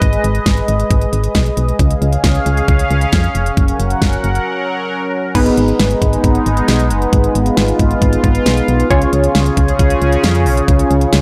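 An airy, resonant sawtooth pad with chorus and shimmer reverb sits up front in this driving, cool synth-pop excerpt at 135 BPM in G# dorian, carried by a punchy, dark FM bass and a crisp, layered electronic pop drum kit with a knocking kick, pausing for a break at 4.5 seconds before a funky, detuned polysynth comp with a filter pluck enters at 5.3 seconds over G#m and C#, all captured in a gritty hardware recording with transformer saturation and light reverb.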